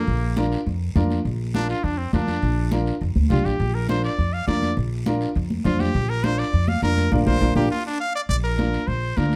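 A cumbia groove in straight 4/4 runs at 204 BPM in Bb major, with a festive, sunny mood, in a short clip cut from a longer piece. A brilliant, punchy trumpet opens at 0.0 s and carries the melody as a close-miked, pop-style solo spanning Bb3 to F5, with a band accent arriving at 7.1 s before a new section begins at 8.3 s. Underneath, a woody, thumpy pizzicato upright bass with steel strings sits up front in a low register, while a warm, open upright piano joins at 0.4 s with accompaniment between D4 and C5. High-tuned congas played with hard hands add a thin-skinned snap from the background, and a raspy guiro scratches along quietly. The production is dark overall, with moderate studio reverb giving the parts a modest sense of room.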